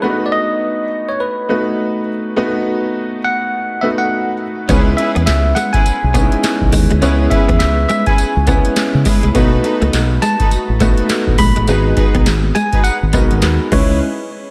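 New jack swing R&B with a confident, slick air, this dreamy, reverb-soaked cut opens on a bell-like, barky tine electric piano melody trailing ambient delay over intimate baby grand piano accompaniment, and at 4.7 seconds a booming analog drum machine with deep kick, crisp snare, handclaps, metallic hi-hat, tambourine and crash arrives with a round fingered electric bass, a compressed, chorused clean electric guitar riff in the background, and distant, lush string stabs.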